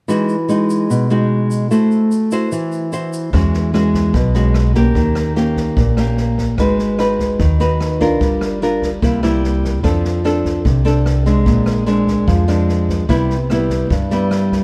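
A fingerpicked nylon-string guitar with old strings sits up front in this relaxed, romantic bossa nova at 148 BPM, first joined by a grainy, mellow tube shaker until 3.3 seconds, when a woody pizzicato upright bass and a small-room jazz kit of boomy kick, rim click and snare take its place, as jazzy chords move from Emaj9 to Cmaj7 in a dark, warm production with light reverb.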